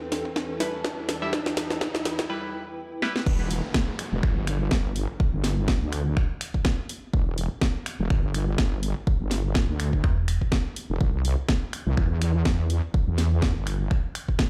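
Bouncy and swaggering, this bass house cut opens on a build-up where a bright, resonant sawtooth pad and a blurred granular cloud pad drift under a riser and downlifter, while a nasal, band-passed chord stab with phaser, 12-bit sampler grit and dub echo rides a filter sweep before a brief break. A house kit with a cracking snare, finger snaps, hi-hat and crash comes in at 0.1 seconds and a punchy, tape-warm kick follows at 0.3 seconds, both re-recorded in a large room. At 3.3 seconds the drop lands with a heavy, saturated wobble bass of detuned sawtooth and sine that pumps against the kick. A metallic FM bass stabs in at 10.0 seconds, the harmony moves from E minor to C at 11.0 seconds, and a big, reverberant digital ambience surrounds the whole mix.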